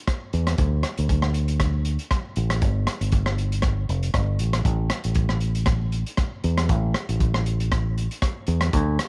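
The sound is dry and close, with little reverb, and this danceable, warm-spirited excerpt comes from a longer highlife guitar band piece at 118 BPM in 4/4, with a 16th-note swing and tuning set at A4 = 445 Hz. A crunchy breakbeat kit arrives at 0.1 seconds, its hi-hat, tight kick and rim click sitting up front with a gritty, saturated, small-room tone and a rolled-off top. From 0.3 seconds, a fingered electric bass moves between F1 and E2 with a round, dark, direct sound, also up front.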